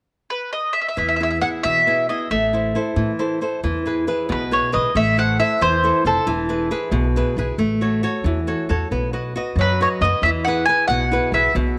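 Set in a moderate plate reverb, this lively, sunny Italian folk serenade in 6/8 opens with a mellow, round, double-strung mandolin melody up front at 0.3 s, joined at 1.0 s by bright, fingerpicked flamenco guitar and dark, woody pizzicato upright bass, while the mandolin pauses at 6.3 s and returns briefly near the end as the harmony moves from E and Am through A6 and B.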